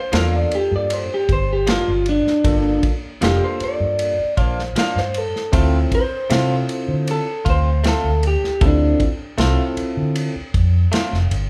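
A slightly broken-up electric guitar through a small old amp opens this smoky, soulful straight-eighth soul blues, carrying the melody with spring reverb until it drops out at 9.0 s. Close behind it come bell-like tine electric piano chords, bright clean stabs from a direct-recorded electric guitar, a dark, foam-muted fingered bass that sits up front, and a dry, mid-forward drum kit of tight kick, medium-tuned snare and dark ride cymbal. The harmony moves from Gm7 to Dm7 at 5.5 s, and the band sounds as if it is playing live together in one large studio room with a moderate reverb.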